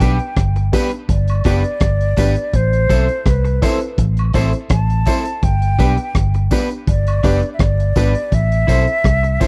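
A dry, close 1970s-style studio sound frames this laid-back, uplifting roots reggae excerpt at 83 BPM in G major, moving between G and Am chords. A hollow, airy silver concert flute with vibrato carries the tongued melody through tape echo, while a twangy, slightly broken-up electric guitar, also echoed, and a worn, woody upright piano with audible action noise provide accompaniment and stabs. Underneath, a round, foam-muted fingered electric bass and a gritty, saturated breakbeat kit with a punchy kick and rim clicks sit up front, and a distant tambourine and woodblock add light percussion.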